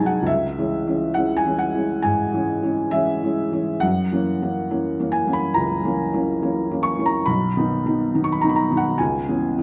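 Classical romantic nocturne for solo piano, yearning and mournful in a slow, rubato 4/4, played on a felt-muted upright piano whose soft, intimate, vintage tone sits up front in a moderate recital-hall reverb, its chords moving from C#m through F#7 and B before settling on C#m7 at 9.0 seconds in this brief excerpt cut from a longer piece.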